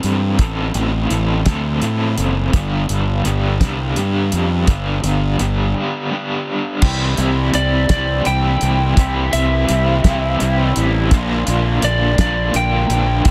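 Indie rock in a restless, moody 6/8 at 56 BPM, cut from a longer piece, where an up-front overdriven garage guitar riff with tremolo rides over round fuzz bass and a dark, cloth-damped drum kit with a fat snare and tight kick, moving from Am to G before a break at 5.8 s, after which a bright second garage guitar with chorus and tape echo joins at 6.8 s as the harmony shifts to C and Bb, and a slightly broken-up, compressed lead guitar solo bathed in plate reverb enters at 7.5 s, the whole mix pressed into a dense, heavily limited modern master.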